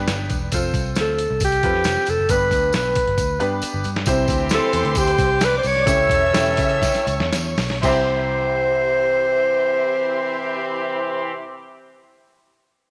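A breathy, close-miked alto saxophone carries the melody from the very start, its subtone and gentle vibrato sitting intimately up front over a clear, slightly detuned upright piano and a dark, foam-muted electric bass with a round, punchy tone. This cut from a longer uplifting, joyful 1960s-style soul piece moves in a straight four, propelled by a compressed, gritty sampler-style drum kit with a thumpy kick, plus a jingly, bright tambourine farther back. Drum fills lead into new passages, the first arriving at 3.2 seconds. At 4.1 seconds a mellow, jazz-style horn section with slapback echo and a lush, bowed symphonic string section with portamento join as second lines, while the tempo slows through the middle stretch. The drums and tambourine drop out around 8.0 seconds, leaving the saxophone, piano, bass, horns and strings to close over a C chord. An echo chamber reverb gives the whole blend a vintage sense of space.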